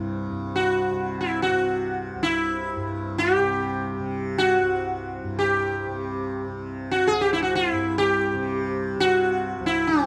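The recording is dry and close, with the feel of a 1970s studio and a light touch of reverb. This radiant, meditative Hindustani classical passage is cut from a longer piece. A softly plucked tanpura drone, low in the mix with a warm, buzzing tone, sounds from the very start. At 0.6 seconds the sitar enters up front with the melody, its bright, plectrum-plucked notes ringing against sympathetic strings that give it a shimmering halo. The sitar stays in the middle register above the deep drone, and both parts carry on together to the end at 10.1 seconds.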